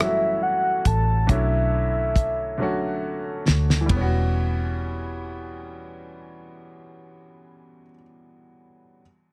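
A soft, octave-layered synth lead with chorus, vibrato and plate reverb sings a round, dark-edged melody at the opening of this yearning, late-night six-eight R&B excerpt at 46 BPM in E dorian, driven by a dry, fat-snared 70s drum kit that plays a fill from 2.6 seconds before stopping at 4.1, a foam-muted fingered electric bass sitting up front, and a clear, worn grand piano with plate reverb that moves through F#m7, Bm11 and Em69 and lingers to 9.0 seconds.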